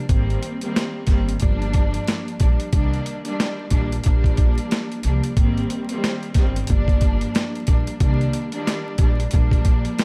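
This is a reflective, gritty boom-bap hip-hop track, cut from a longer piece, with a swung sixteenth-note feel in 4/4. The drum kit sits up front with a sampler-style character: compressed and pitched down, with a thumpy kick and a high-tuned snare, plus hi-hat, running from 0.1 seconds to the end. Beneath it, a pizzicato upright bass with steel strings gives a woody, acoustic low end, playing from 0.1 to 9.8 seconds. A bowed studio string ensemble carries the accompaniment from the very start, played sul tasto with vibrato and a soft attack. Its sound is intimate and close, with a smooth top, and it is filtered at both ends of its range. The harmony cycles through Abmaj7, Gm7, Cm7 and Bb6 twice, all wrapped in small-room ambience and a layer of vinyl crackle.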